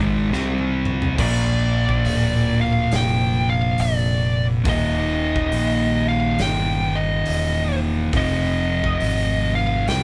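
A double-tracked fuzz guitar riff opens this brooding stoner and doom metal excerpt together with a growling, overdriven fingered bass. A big acoustic rock kit arrives with a drum fill at 0.3 seconds, its punchy kick and bright cymbals ringing in a big room. At 1.2 seconds a dark, compressed fuzz lead guitar enters up front over a swung groove as the chords move from Bb through Eb to Fm, the whole band sounding ominous and live in one room with light reverb.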